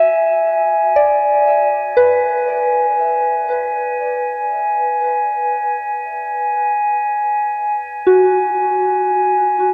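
Ambient music in free time, this short excerpt cut from a longer piece feels luminous and weightless, resting on a single E9 chord in E mixolydian with tuning set slightly high at A4 = 441 Hz. A soft synth bell plays arpeggios between F#4 and E5 throughout the 9.7 seconds, its FM tone gentle and mellow, with quick attacks that decay away, thickened by chorus and trailed by a diffuse ambient delay. Beside it, a glass harmonica holds a texture on G#5, its slow-attack sound glassy, ethereal and smooth. Both parts sit up front at an even level, the harmonica leaning toward the midrange while the bell stays pure and soft. The whole is bathed in a huge, wet ambient reverb with an 8.2-second decay, and the recording comes from cassette tape.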